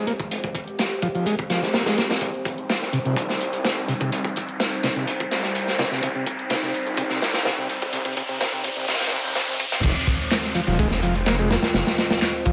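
Breakbeat at 126 BPM in F minor, this funky, gritty excerpt builds over a filter-swept combo organ riff, reedy and overdriven with sampler grit and tape echo, a warbling, nostalgic pad pumping in the background, a thick, menacing detuned saw bass, a punchy electronic analog drum machine adding handclaps and hi-hat, and a rising riser under a saturated, up-front breakbeat kit with dark cymbals and a tight kick, until the drop lands at 9.8 seconds as the chords return from Cm to Fm.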